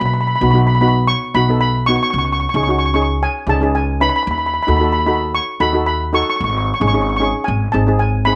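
Dry and close, recorded outdoors and free of room sound, this brief 8-second snippet of moody, brooding calypso moves in a straight 4/4. An airy lead steel pan played with medium rubber sticks carries the melody up front, its metallic tone touched by a slapback echo, while a shimmering double-seconds pan enters at 0.4 seconds with lower accompaniment. A woody, thumpy pizzicato upright bass on gut strings sits prominently beneath, underpinning a dark progression from B through C#sus2 and D#dim to G#sus4 resolving on G#.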